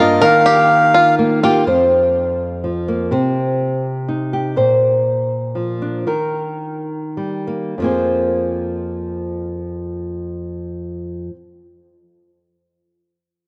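A reedy, breathy melodica melody and twangy fingerpicked banjo arpeggios open this wistful, intimate acoustic folk waltz over close-up nylon-string guitar with audible finger squeak, and once the melodica stops at 1.2 seconds and the banjo at 1.7 seconds, the guitar carries on alone, slowing between 4.6 and 7.8 seconds, all within a lush hall reverb and the soft grain of a home cassette recording.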